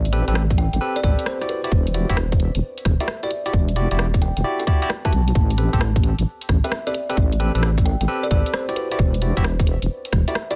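A deep, wobbling bass opens this soulful, moody two-step garage excerpt at 132 BPM in A dorian, sitting up front and pumping against a tight electronic kick that arrives at 0.5 seconds. A barky tine electric piano plays clean stabs through tape echo, while a garage kit with bright hats and rim clicks swings on the 16ths over Am9 and Em9 chords. From 0.6 seconds a woody, ringing kalimba carries the melody, all within a dense, heavily limited modern mix.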